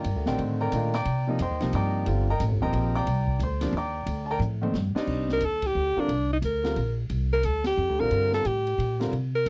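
A sustained baby grand piano, a woody pizzicato upright bass and a dark acoustic jazz kit with a boomy kick and high-tuned snare open this spiritual, hypnotic modal jazz piece in 3/4 at 178 BPM in C dorian, swinging over Cm9 and Gm/C chords until a drum fill at 4.4 seconds ushers in a bright, forceful alto saxophone with vibrato up front at 5.3 seconds, punctuated by band accents, in a dry, close 1970s-style studio recording.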